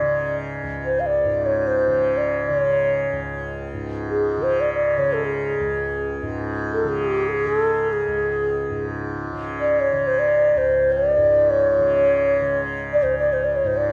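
An airy, hollow bansuri carries the melody up front, its straight tone and soft attack shaping a devotional, radiant line in free time in this 13.9-second passage cut from a longer Hindustani classical piece. Beneath it, a softly plucked tanpura sustains a buzzing, shimmering drone for the whole span. A moderate concert hall reverb gives the pair a spacious, glowing setting.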